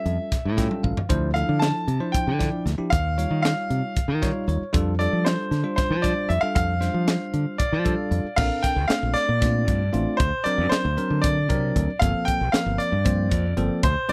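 A brilliant concert grand carries a funky, soaring melody over bell-like tine electric piano chords in this electric jazz fusion excerpt, set in a fast 7/8 at 231 BPM and moving from F major to Bb major at 8.4 seconds. A punchy fingered electric bass and a crisp, gritty drum kit with a high-tuned snare, tight kick and pumping small-room sound sit up front. A drum fill lands at 0.7 seconds alongside a short electric piano fill, and further electric piano fills follow near 4.0 and 7.6 seconds. Rich extended chords such as A7b13, Eb9 and Bbmaj9 pass by in a dry, close mix.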